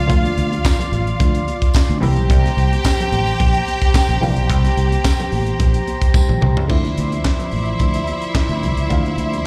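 A punchy, round fingered electric bass and a tight funk drum kit with a high-tuned snare drive this sultry disco excerpt, joined by lush bowed strings with tape and slapback echo, a mellow muted clav through a phaser, a lightly overdriven tonewheel organ with key click on a slow rotary speaker, ringing high-tuned congas, and a distant jingly tambourine that plays until 6.3 seconds, with a drum fill at 6.1 seconds leading into a shift from Dm7 and C7 to Dm9 at 6.7 seconds, all heard as a live gig through a venue's PA in recital-hall reverb.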